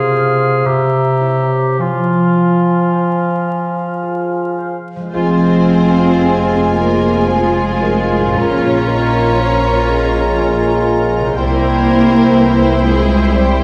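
Classical in F minor and 3/4, this solemn, melancholic excerpt moves at a slow, rubato 52-62 BPM, opening with ringing concert harp arpeggios beneath a bright clarinet, mellow cor anglais, airy, hollow concert flute and a mellow bassoon accompaniment, passing from Fm/C through C7b9 back to Fm. At 5.1 s the strings arrive: a clear violin section carries a distant melody in the background alongside a smooth, close second violin line, with focused violas, a very quiet dark French horn section in sustained chords, and rich, vibrato-laden cellos and double basses anchoring the bass as the harmony turns to Bbm and then C7. A wet recital hall reverb places the ensemble further back in the room, with vinyl crackle over the sound.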